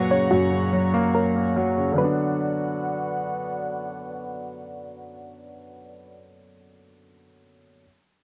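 Eerie and melancholic, this half-time hip hop fragment at 144 BPM in B harmonic minor opens with a filter sweep as a soft, round, dark pluck melody with chorus and cassette-tape coloring plays until 3.2 seconds, over an up-front concert grand piano with deep bass and a reedy, gut-string studio section with light vibrato holding sustained chords until 6.1 seconds, all moving from F# to Bm in moderate booth ambience on a home cassette recording, with the piano alone carrying on to 7.8 seconds.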